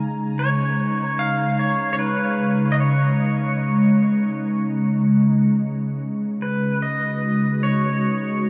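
A glassy, ethereal FM pad sits up front, holding slow-attack chords with a long release, colored by ensemble chorus, phaser and its own reverb, moving from a Db5 chord to Dbsus24 at 5.2 seconds. From 0.4 seconds a clean, twangy electric pedal steel guitar, played with fingerpicks and slide, carries a compressed melody with volume swells through tape echo. This serene ambient fragment at 75 BPM in 3/4 is cut from a longer piece and bathed in a huge, wet reverb with a dark, warm production.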